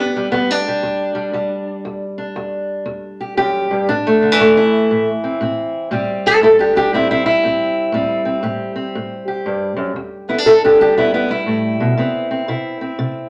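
A fingerpicked steel-string parlour guitar, dark and woody with the dull bite of old strings, sits up front in a wet studio reverb for this brooding, smoky acoustic country blues excerpt in E minor at 119 BPM with a swung 4/4 feel, moving from Em7 to Am7 at 3.9 seconds and back to Em7 before landing on Cmaj7 at 12.0 seconds.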